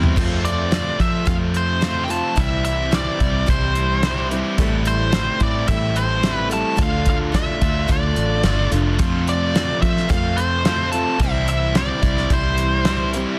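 A drum fill opens this short folk rock and heartland rock excerpt, a hopeful, open-road piece moving at 109 BPM in a straight 4/4. The natural country drum kit sounds fat and punchy, its dark cymbals and rolled-off top sitting in a small room, while a round, foam-muted fingered electric bass anchors the low end. A bright, full-bodied picked steel-string acoustic guitar carries the accompaniment alongside a double-tracked overdriven electric guitar playing a riff. From 0.4 seconds a nasal lead guitar with a parked wah and overdrive takes the melody, placed up front and riding high in its range. The chords cycle through F, C, Am7 and Dm before returning to F and C, all under light reverb and a dense, heavily limited modern master.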